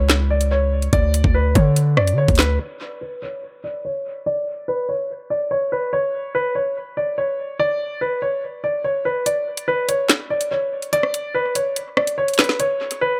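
Tense and cold, this 144 BPM half-time drill excerpt sets a dark, worn baby grand piano melody, filtered and soaked in dub echo with a filter sweep from 2.6 to 9.3 seconds, over a punchy sine 808 bass that drops out at 2.6 seconds and an overdriven drill kit of knocking kick, woody snare, bright hats, rim clicks and handclaps that falls away before returning at 9.3 seconds with the kick muted, all in a dry, echo-heavy mix.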